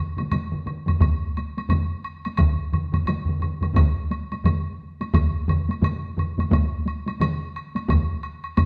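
Japanese traditional taiko drum ensemble music, driving and ceremonial, moves at 87 BPM in 4/4 with a swung sixteenth-note feel, and this short passage is cut from a longer piece. Three taiko ensemble parts play throughout, one heavy-sticked and close and dry, another heavy-sticked in a small room, and a third struck with hard sticks, beside a woody, close woodblock. Solo taiko drums, also played with hard sticks and the most prominent part, enter at 1.0 seconds and stop at 8.1 seconds, while the group plays live together in a stone room with a wet reverb.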